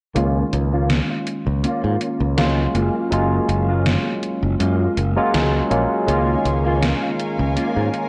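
A lightly swung 4/4 groove of gated, overdriven 80s drum-machine hi-hat and snare drives this nostalgic, woozy vaporwave fragment, where a barky tine electric piano with chorus and tape echo carries the Db6 and Gbmaj9 chords, a growly, punchy fingered electric bass sits up front, a dark, mellow clean electric guitar riff moves through a filter sweep, and a studio string section enters at 6.1 s with intimate sul tasto chords touched by 12-bit sampler grit, over a worn, warbling cassette drift and light digital ambience.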